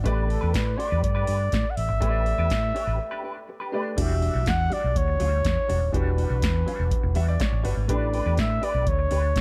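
A straight 4/4 disco groove from an up-front electro analog drum machine, with its deep kick, punchy snare and metallic hats, drives this glamorous piece, joined by a fingered electric bass whose envelope filter gives it a bright, amped bite. A twangy, clean electric guitar with wah and spring reverb and a clear grand piano fill out the harmony, and a break at 3.0 seconds leads into a new section at 4.0 seconds, with a piano fill arriving at 6.9 seconds. On top, a breathy flugelhorn carries the melody with a soft attack and a whispered, intimate, smooth tone, all in a dark, warm production.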